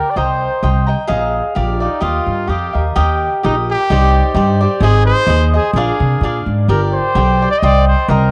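A clear trumpet with light vibrato and a smooth top sings a classical-style solo melody in Eb major, alongside a mellow, crisply picked cavaquinho, both carrying a cassette-tape tint, in this festive, romantic mariachi excerpt at 129 BPM in 2/4 with a swung, rubato feel. At 0.2 seconds a woody, dark pizzicato upright bass with steel strings joins up front, anchoring chords that move from Cm7 through Ebadd9, Ab and Gm before returning to Cm7. A moderate spring reverb and the home-cassette sound give the whole recording an intimate, slightly dusky character.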